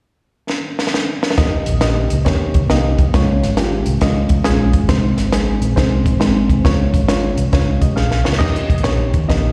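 A compact cocktail drum kit opens with a fill at 0.5 s, its high-tuned snare, punchy kick, hi-hat and crash sounding dark, smooth and up front. At 1.4 s a barky, reedy electric piano with overdrive, phaser and slapback echo enters together with a round, foam-muted fingered electric bass, and this uplifting, uptempo 1960s-style soul excerpt swings at 137 BPM in Eb mixolydian through Eb, Db and Ab. A second drum fill at 8.0 s leads back to Eb, all heard as a live gig through the venue's PA with recital hall reverb and small room ambience.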